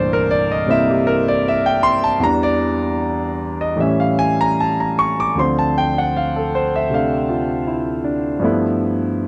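A dry, close studio sound with a 1970s character frames this short, sophisticated solo jazz excerpt, where a clear concert grand piano with deep bass, natural tone and long sustain sits up front, playing alone throughout in a swung, rubato 4/4 over rich chords moving from C13 through Em7, A7 and Dm7 to G13 at 8.4 seconds.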